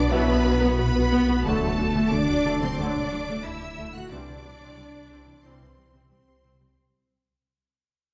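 A hall reverb surrounds this short cut from a longer cinematic score, a hybrid of orchestra and electronics at 90 BPM in 4/4 that feels vast and tense and fades out across its length. Lush bowed violins with vibrato carry the melody high up, and a second violin line with a soft attack sits beneath them. A woody viola section, a smooth cello section and a bowed double bass section fill out the strings in the background and low end. A distant, roomy French horn section and a loose trombone section hold sustained chords, with the trombones dropping out at 5.7 s. A round, mellow synth pluck with chorus plays arpeggios, a felt-muted upright piano adds an intimate vintage texture, and a deep, punchy sub bass with a pitch-drop attack anchors the bottom. The harmony moves from B minor to D at 1.5 s, then to C at 4.1 s.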